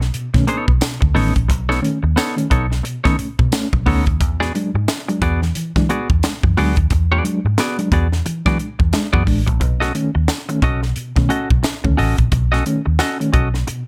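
This gritty, energetic funk groove moves at 89 BPM in 4/4 with a 60% swing on the sixteenths, sitting in B mixolydian and cut from a longer piece. A crisp fusion drum kit sits up front with an airy, polished sound, a high-tuned snare and a punchy kick. Beneath it, a vintage muted fingered electric bass gives a dark, round, foam-muted tone from A1 to E3 and is the loudest part. A clean, compressed semi-hollow electric guitar, also up front, plays the accompaniment with a hollow-body character, while a mellow reed electric piano adds reedy stabs with a fast tremolo heard through its built-in speakers. A jingly tambourine enters at 0.8 seconds and stays in the background until 13.2 seconds, and the harmony moves from B9 to E9 at 4.2 seconds before returning to B9 at 9.6 seconds, all in a small room reverb.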